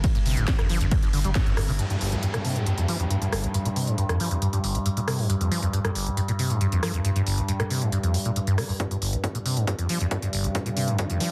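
A straight 4/4 pulse at 137 BPM drives this hypnotic, industrial peak-time techno cut from a longer piece, opening on a drop where a punchy, up-front electronic kick and a deep, saturated sine sub bass hit together with a band accent at 1.4 seconds, while a techno kit of cracking snare, smooth hi-hat, ride cymbal and rim click, re-recorded in a small room, runs throughout. A squelchy, resonant sawtooth acid riff with cassette-tape colour, delay and sidechain pumping spans G1 to G3 over a chorused G2 drone of moving overtones, and an electronic downlifter and riser sweep through from 1.8 seconds. At 8.8 seconds the kick returns for a build-up as a filter sweep moves across the acid bass over a G7(no3) chord, all pressed into a dense, heavily limited master with light reverb.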